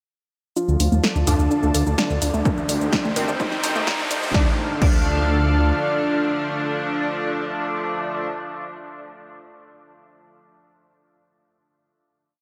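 A four-on-the-floor electronic kick, punchy and up front, drives this short, complete melodic techno piece at 127 BPM in 4/4 with a straight feel. It enters at 2.5 seconds beneath a punchy analog drum machine playing programmed hats, shaker, toms, crash and a snare backbeat. A dark, detuned saw bass rumbles underneath in rolling sixteenths. A fat, vintage analog lead with vibrato carries a repeating riff, while a background pluck runs a 6-step arpeggio loop that drifts against the bar. Alongside them sit an edgy sync-sweep polysynth with sparse, echoing chord stabs and a thick, slow-blooming unison pad. Over a driving, melancholic Dm to Cm/D progression in D phrygian, filter sweeps on the synths and a background riser shape the build, which resolves at 4.3 seconds into a final Dm chord held in a dreamy, cathedral-like reverb with pumping sidechain motion.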